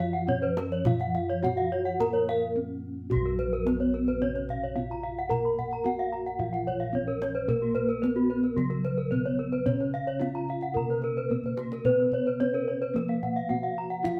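A straight 4/4 pulse at 110 BPM drives this brilliant, shimmering fragment of Balinese gamelan in Bb pelog, cut from a longer piece. Across the whole passage, a padded-mallet bronze metallophone carries the mellow, mid-forward melody, while a second soft metallophone supplies airy accompaniment in the background. Two more metallophones spin arpeggios higher up: one struck with a horn mallet for a bright, airy ring, and the other, entering just after the start, with a boxy, small-room warmth. Close-miked bossed gongs anchor the bass with a round, dry, full tone up front, and a tight kendang played with hard hands keeps the percussion close and acoustic. The paired tuning gives every metallophone its beating shimmer, and the band's live sound in one room sits in moderate reverb. A break at 2.3 seconds leads, through a kendang fill, into a longer second section at 3.1 seconds, with another fill arriving at 11.3 seconds.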